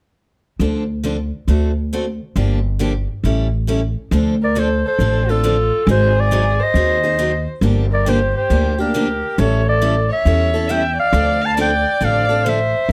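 A growling, raspy clarinet takes the solo melody in this swinging, virtuosic acoustic string swing piece in D minor, cut from a longer piece and moving at 136 BPM with a swung eighth-note feel. The clarinet enters at 4.4 seconds with a gritty, vintage jazz voice, scooped notes and light vibrato, sitting up front. At the same moment a single bowed violin adds a darker second line beneath it, with vibrato and portamento giving it a woody quality. From the start at 0.6 seconds, a bright, boxy parlour steel-string guitar picks the accompaniment on fresh strings, while a pizzicato upright bass on gut strings provides a thumpy, up-front low end. The harmony moves through Dm7, D7, Gm7 and A7 in the opening section, then adds a tense G#7#11 before returning home to Dm7. Close, detailed microphones and light reverb keep the small group intimate and present.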